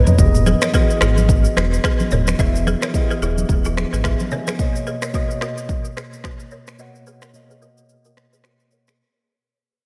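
Romantic and breezy, this short afrobeats passage, cut from a longer piece, drifts along in 4/4 with a gentle swing on the sixteenths. A mellow tine electric piano, filtered and heard as if through built-in speakers, carries the accompaniment on Emaj7 moving to Bmaj9, and adds a brief fill around 3.8 seconds. A deep, sine-pure sub bass with an octave and a fast attack anchors the opening, dropping out at 4.2 seconds, while soft-handed, damped congas sit in the background before stopping shortly after. Up front, an electronic afro-pop drum kit with a tape-warm tone opens on a fill and sets finger snaps, rim clicks, shaker and toms over a deep kick, and a woody, buzzing balafon riff struck with hard rubber mallets floats through a filter and a diffuse ambient delay. The dreamy mix is soaked in lush hall reverb, with a filter sweep and fade-out running throughout and a break arriving at 6.8 seconds.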